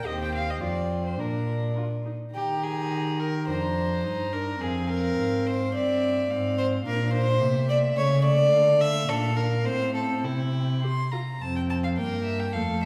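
Violin melody, dark viola accompaniment and warm cello bass open together, joined at once by a second violin line, in a lively, graceful classical-period movement for string quartet at a quick 106 BPM in 2/4, starting in Eb major and moving to F major at 6.9 s. Each part is played by one bowed player with period-style gut strings: the melody violin sounds rich and reedy, the viola nasal with a smooth top, the cello carries a light vibrato and sits up front, and the second violin is close and present. A recital hall's long reverb places the ensemble further back in the room in this brief fragment cut from a longer piece.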